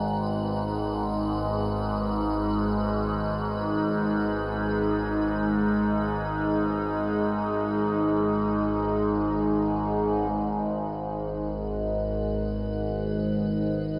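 A low, detuned sawtooth drone sits up front, its moving overtones churning through a vast, ominous G# minor haze in free time, tuned to A4 = 441 Hz. Above it, an evolving, resonant pad with a filter swell holds sustained chords, while a faint, icy glass pad adds a crystalline, airy shimmer on a single high note. All of this is soaked in a huge, wet reverb with a long tail, in this dark ambient drone fragment cut from a longer piece.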